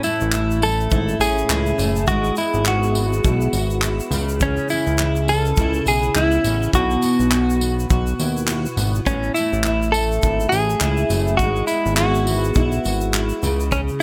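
Acoustic pop with an easy-going, sunny mood, this excerpt moves at 103 BPM in 4/4 with a light sixteenth-note swing in E major, cycling through A, Eadd9/G#, C#m7 and Bsus4. An up-front, clean electric guitar recorded direct carries the melody over a double-tracked, full-bodied fingerpicked steel-string acoustic with fresh strings, while a fat, saturated analog bass with a filter pluck and fast attack enters at 0.2 seconds. A polished studio drum kit with a tight kick, handclaps and tambourine sits in an airy room, a grainy, bright tube shaker stays in the background, and light studio reverb rounds out the sound.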